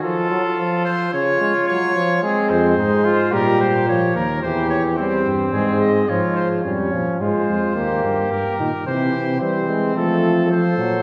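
A clear trumpet carries the melody of this contemplative, serious brass canzona, with a warm, soft-attacked second trumpet weaving a second line beneath it and a trombone with vibrato supplying accompaniment, while a mellow bass trombone with light vibrato enters at 2.5 seconds, all set back in a reverberant concert hall for a roomy, distant sound in a fragment cut from a longer classical piece.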